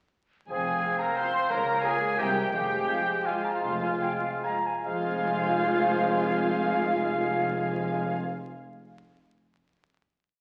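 Heard through the crackle of a very old 78 rpm record and a wet scoring-stage reverb, this short, sweeping and bittersweet orchestral ballroom waltz in rubato 3/4 gives the melody to dark, veiled con sordino violins with a background oboe doubling the tune, while a pure-toned flute, a mellow clarinet and a second violin section hold sustained chords, a distant viola section and a warm bassoon fill the middle over mellow French horn chords, and bowed cellos and double basses carry the bass, slowing from 2.0 seconds into a final chord at 4.9 seconds.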